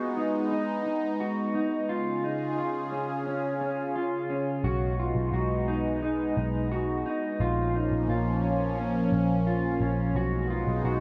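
A swirling, detuned analog pad with phaser and chorus holds sustained chords through this ethereal, dreamy dream pop excerpt at 87 BPM in B lydian, while a mellow, clean electric guitar plays arpeggios through lush chorus and tape echo, and a round, foam-muted picked electric bass enters at 4.6 seconds beneath a reverb-soaked mix.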